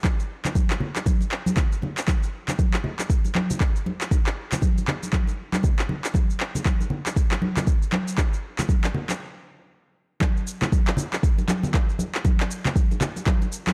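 Spiritual and earthy, this short house groove has a swung sixteenth-note feel and a dark, dry production. A deep, layered electronic kick sits up front alongside overdriven electronic handclaps and shaker and acoustic congas with a thick, medium-tuned skin struck with hard hands. Everything halts in a stop at 9.2 seconds before the drop arrives at 10.2 seconds.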